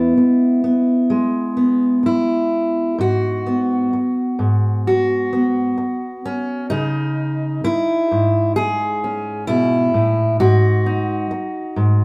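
Folk music for a solo fingerpicked steel-string acoustic guitar, pastoral and warm, unfolding at a loose, rubato 65 BPM in 4/4 with tuning set to A4 = 444 Hz. The guitar sits up front with a full, auditorium-sized body, spanning E2 to G#4 as it opens on E and then moves at 3.0 s into a passage through G#m7, C#madd9 and G#5. A moderate stone-room reverb with a 1.1 s decay surrounds this live performance, cut from a longer piece.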